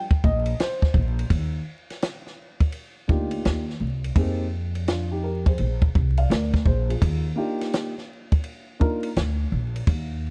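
Warm and relaxed, this short cut from a longer jazz-hop piece in Eb major sways at 84 BPM with a 16th-note swing, opening with a mellow upright piano playing alone with audible action noise before a punchy, dry cocktail kit with dark cymbals and a high-tuned snare, plus a growly pizzicato upright bass, join under chords moving from Ebmaj9 through Fm11 and Bbadd9, all wrapped in a dark production with vinyl crackle.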